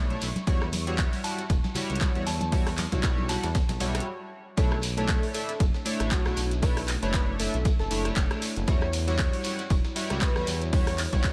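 Moody and warm, this excerpt from a longer deep house piece moves at 117 BPM in E dorian with a swung sixteenth-note feel, its tuning sitting slightly below standard pitch. A punchy, tape-warm electronic kick sits up front, joined by a layered house kit of handclaps, hi-hat and rim click that sounds re-recorded in a small room. A gritty, very quiet sampler-style kit with a high-tuned snare, hi-hat and ride cymbal adds a faint second layer, while a grainy, distant shekere and bright, close congas sit in the background, the congas dropping out at 3.8 seconds. A smooth sawtooth-and-triangle synth bass and a glossy, retro chorused polysynth playing stabs both pump with sidechain compression, the polysynth also carrying a cassette tape character and dub echo over Em69 and Bm11 chords. Early on, a silky, very quiet string pad and a soft, pure FM bell with chorus and dub echo float above, until a short break leads into the drop at 4.6 seconds. 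There a velvety, detuned lead with vibrato, portamento, chorus and digital delay takes the melody, and from 5.4 seconds a warbling, nostalgic lo-fi pad holds sustained chords, all set in light reverb and a digital ambience.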